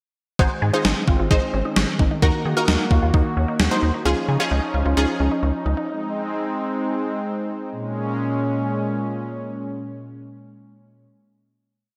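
Cool and melancholic, this short synth-pop piece in 4/4 carries a bright 1980s-style digital production bathed in a lush hall reverb. A gated 80s digital drum machine sits up front with a thumpy kick and a gated reverb snare in a straight, sampler-style beat, stopping at 3.7 seconds. Beneath it, a rubbery square bass bounces through a sequenced line with a hollow, resonant filter pluck. A detuned unison pluck plays syncopated triad chords with a filter sweep and lush chorus, while a squelchy resonant blip pluck spins an ostinato of short-decaying notes through phaser and digital delay. A brassy analog pad holds warbling, vintage chords with vibrato over the progression from Ab through Ebm and Dbadd9, settling on a closing Bbm7 at 7.7 seconds and sustaining alone until 11.1 seconds.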